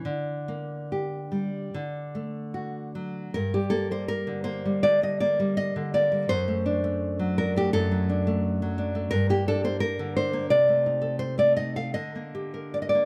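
A fingerpicked nylon-string guitar with a warm, fresh-stringed tone sits up front in this intimate, melancholic romantic solo piece in G minor, moving with a rubato feel around 71-90 BPM through chords such as Gm, D7/F# and Adim/C, its opening phrase giving way to a longer second section at 3.3 seconds, captured by close, detailed microphones with light reverb and cut from a longer performance.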